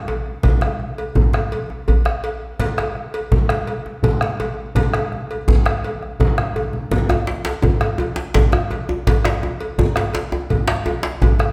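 A wet recital-hall reverb wraps this earthy, driving West African drum ensemble excerpt in 12/8 at 111 BPM, where a metallic cowbell and a tight, cracking djembe set in the background start at 0.1 seconds, a deep, dark bombo and low-tuned, thick-skinned congas played with soft hands sit up front from 0.4 seconds, a drum fill lands at 6.4 seconds, and a second, medium-tuned djembe joins up front at 7.1 seconds.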